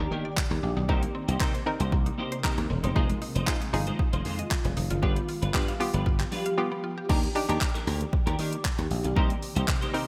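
A straight 4/4 pulse at 116 BPM drives this confident dance-pop excerpt in a bright 1980s-style digital production, where a punchy deep house drum kit with gated reverb drops out from 6.6 to 7.1 s, a foam-muted thumbed slap bass pumps up front, a twangy twelve-string electric guitar riff and a hollow, nasal square pluck sit over a shimmering background pad with phaser, a woody mallet-like pluck plays delayed arpeggios until 7.1 s, a faint impact sounds at the opening, and a barely audible group handclap joins at 7.6 s, moving through Ebmaj7, Cm7, Fm7 and G7 changes in a lush hall.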